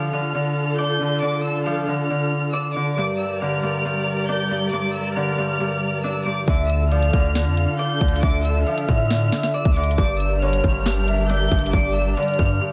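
A dense, heavily limited modern mix with light reverb and small-room ambience frames this brooding, melancholic half-time trap excerpt in D minor at 137 BPM, moving between Dm and Gm. From the start, an intimate, low-pass-filtered studio violin section carries the high melody with light vibrato over a ringing, fingerpicked Celtic harp, also filtered, and a dark, lush symphonic string section holding sustained chords. At 6.5 seconds an up-front trap kit with hard-clipped kick, sharp snare and 12-bit sampler grit arrives alongside a deep, sine-toned 808 bass, while a velvety synth lead adds a second line treated with chorus and delay.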